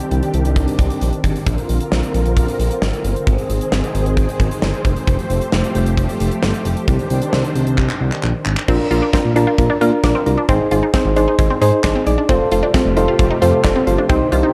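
This nocturnal, melancholic synth-pop excerpt at 133 BPM in 4/4 opens with a vintage string machine voiced as cellos, holding mellow, full sustained chords with an ensemble chorus. A gated 80s drum kit plays alongside it, with a punchy kick, medium-tuned snare, handclaps, hi-hat and bright crash cymbals in an airy, polished gated room. Beneath them, a smooth synth bass moves in a dark register with a touch of vibrato, sitting up front in the mix. The harmony cycles through Cmadd9, Bbadd9, Ab and Fadd9, and a drum fill at 7.8 seconds leads into a new section at 8.7 seconds. There the strings drop out, and a soft, round electric-piano-like synth adds gentle, full-bodied accompaniment with chorus and a filter sweep, while a resonant blip pluck traces juicy, squelchy arpeggios through phaser and delay. The strings return at 12.3 seconds, and the whole sits in light reverb with a small room ambience.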